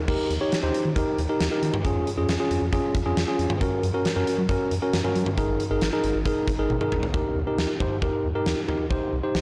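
A blown-out, overdriven recording with light reverb frames this wistful, bright synth-pop cut in Eb mixolydian at 136 BPM in a straight 4/4, where a clean, up-front tine electric piano carries the chords over a round analog bass with a deep sawtooth-and-sine tone, transformer saturation and a moving notch, while a huge arena drum kit with a punchy kick, fat snare and bright cymbals plays a fill at 6.7 seconds before the music shifts into a new section at 7.1 seconds.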